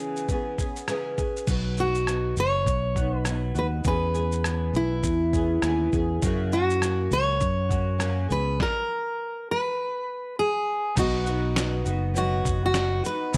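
Acoustic pop with a sunny, heartfelt mood and a light swing, where a full-bodied, fingerpicked jumbo steel-string guitar carries the melody up front over a double-tracked flamenco guitar and a gritty, compressed sampler-style kit with a thumpy kick, rim clicks and shaker, joined at 1.5 seconds by a warm fingered electric bass, with a stop at 8.6 seconds before a smooth, vintage grand piano enters in the background at 11.0 seconds, all in a small, lightly reverberant room.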